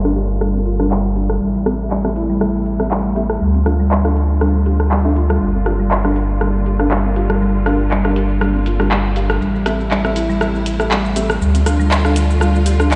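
Afro house at 120 BPM in G dorian, this earthy, hypnotic cut from a longer piece sets buzzing, woody marimba arpeggios under a low-pass filter sweep and tape echo against detuned, ring-modulated chord stabs with chorus and their own filter sweep, while a round sine sub bass sits up front, electronic afro-pop drums bring cabasa, handclaps, metallic hi-hats and rim clicks, and a clear bowed string section with vintage 12-bit grit holds sustained chords in the background, all heard through a big sound system in a bare room with large studio reverb.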